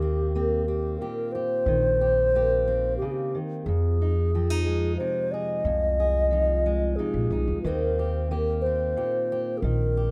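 A small room's reverb surrounds this rough home-demo recording, a short folk fragment cut from a longer piece, with an intimate, reflective mood in an unhurried 3/4 and tuned slightly below standard pitch, to A4 = 438 Hz. Across the whole 10.1 seconds, a mellow, hollow alto flute carries the melody up front, its pure tone given gentle vibrato, tongued notes and lifted highs. Beneath it, a full-bodied jumbo steel-string acoustic guitar is fingerpicked as accompaniment, sitting a little further back than the other parts. An upright bass, also up front, is plucked pizzicato with a woody, warm character that anchors the low end. The harmony moves from Eb6 to Fm7 at 3.7 seconds and settles back on Eb6 at 7.6 seconds.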